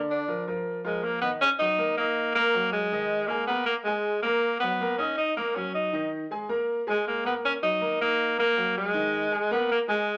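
Latin music in Eb minor at a brisk 159 BPM in a straight 4/4, this short cut from a longer piece feels danceable and passionate. A clear concert grand piano carries the accompaniment from the opening second, sitting up front with an open sound and deep bass across a range from D3 to Eb6. The tenor saxophone takes the melody almost at once, a bright, vintage-toned solo voice with vibrato, delivered in a pop style and placed prominently forward, moving between Ab3 and Eb4. After a brief opening on Bb, the harmony from 1.4 seconds settles into a steady alternation of Ebm and Bb7sus4 that runs through to the end at 10.2 seconds. A small, wet room ambience with a short decay surrounds the pair.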